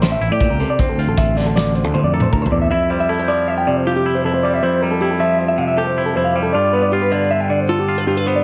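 A straight 5/4 pulse at 156 BPM drives this wistful, restless math rock and midwest emo excerpt, where a loose indie drum kit with a fat snare, punchy kick and pumping room sound pairs with a growling, overdriven fingered bass over Am7 and Dm7, the drums rolling into a fill at 1.9 s before the rhythm section falls away by 2.7 s, leaving a clean, twangy picked electric guitar and a slightly broken-up arpeggio guitar through a small old amp, with slapback echo, to carry Fmaj9 and G7 in light reverb.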